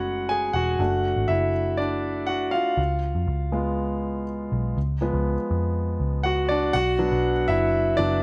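A straight 4/4 pulse at 121 BPM drives this bittersweet piano-led pop clip, where a clear, intimate concert grand with audible action noise, deep bass and long sustain plays solo up front through F#madd9, D/F# and C#7 before turning to Bm at 6.7 seconds, while a dark, round, foam-muted picked electric bass sits lower underneath, all set in a moderate plate reverb.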